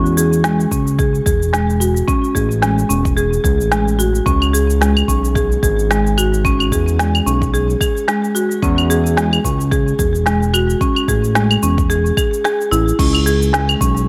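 Hypnotic and meditative, this organic downtempo excerpt cut from a longer piece rides a gently swung 4/4 groove, with bright, woody marimba arpeggios up front, softened by a low-pass filter and trailed by delay and shimmer reverb, over a smooth, saturated sawtooth-and-square synth bass that sustains with vibrato and sidechain pumping. An organic electronic kit of cabasa, claves, crash cymbal and woody snare enters at 0.1 seconds, joined by a deep electronic kick at 0.7 seconds, both tape-toned and re-recorded in a large room. The harmony cycles through E6, A and C#7(no3) in a digital ambience with light reverb, shifting into a brief new section at 13.0 seconds.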